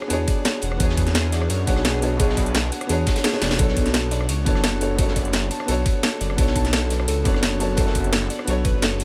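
A soft, felt-muted upright piano with audible action noise and a delay opens this lush, melancholic liquid drum and bass excerpt at 172 BPM in B dorian alongside an up-front drum and bass kit of cracking snare, rim click and metallic hats. At 0.1 seconds a menacing, saturated detuned saw bass with a filter swell joins, along with a ringing harp-like synth pluck playing chorused, delayed arpeggios in the background and a dark, smooth garage kit with a rolled-off top, also tucked in the background. A knocking electronic kick enters at 0.3 seconds, a drum fill lands at 3.3 seconds, and the harmony moves from E13 to Bm9 at 3.6 seconds.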